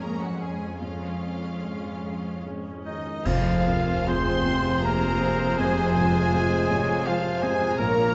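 Moving and sorrowful, this cinematic film-score fragment unfolds in a rubato three-beat lilt, a lush, vibrato-rich violin section carrying the melody over a distant second violin line, smooth violas, a very quiet cello section, a bowed double bass section, a felt-muted upright piano with audible action noise in the background, and a ringing, fingerpicked concert harp playing arpeggios. A cymbal swell, bright clash cymbals and concert bass drum sound from 0.8 to 4.8 seconds, while from 2.9 seconds a pure, crisp-attacked flute, a warm, roomy oboe and a mellow French horn section join, followed by a mellow clarinet and very quiet timpani at 3.3 seconds, where the harmony turns to F minor and the ensemble accents. A wet recital-hall reverb surrounds the whole ensemble with a softened top end.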